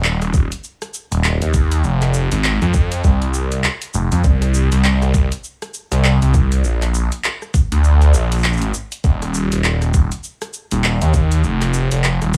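A 59% swing on the 16ths drives this swaggering, funky glitch hop excerpt at 100 BPM in 4/4, tuned to A4 = 443 Hz, where a thick, swirling detuned saw bass with phaser and tube saturation sits up front from Eb1 to F2 over a tape-warm dubstep kit of bright hats, handclaps, rim click and shaker, joined at 0.3 s by a knocking electronic kick, all wrapped in vinyl crackle and small room ambience.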